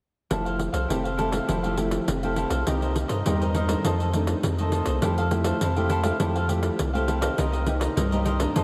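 Festive and lively, this short samba and choro passage, cut from a longer piece, moves at 102 BPM in F major, with its chords shifting from Fmaj9 through Cm7 and F6 before a second section returns to Fmaj9 and Cm7. A bright, crisp picked cavaquinho and a fingerpicked classical nylon-string guitar with subtle chorus play together from 0.3 s, over a deep, punchy sine sub bass with a pitch-drop attack and a jingly pandeiro played with soft hands. The bass and pandeiro sit up front, the pandeiro close and dry, while the dreamy mix is soaked in a huge ambient reverb that lasts 7.3 seconds.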